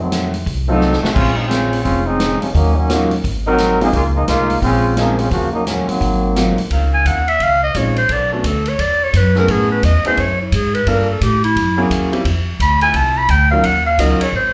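Brassy and joyful, this swinging big-band jazz excerpt, heard live through a club's sound system, opens with a bright, up-front trombone section soloing over woody pizzicato upright bass, a punchy drum kit with dark cymbals and a drum fill near 0.8 seconds, and intimate grand piano with audible action noise, before a raspy, growling clarinet takes the solo at 6.9 seconds, backed by a distant saxophone section's sustained chords.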